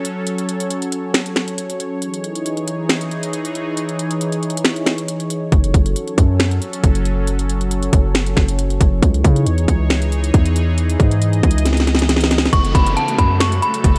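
Eerie and brooding, this half-time trap and hip hop cut opens on a break where a bright, detuned synth pad holds sustained chords, its resonant, evolving tone touched with chorus and ring modulation. A trap drum kit with a hard-clipped kick, sharp snare, crisp hi-hats and finger snaps sits up front, roughened by vintage 12-bit sampler grit. At 5.5 seconds a punchy, heavy 808-style bass drops in, its sine body layered with noise and decaying after each fast attack. A drum fill leads into a new section at 12.5 seconds, where a metallic, inharmonic FM bell rings out a high melody through chorus and a low-pass filter while an electronic downlifter sounds alongside. The mix is dry and close, with little reverb, and the passage is cut from a longer piece.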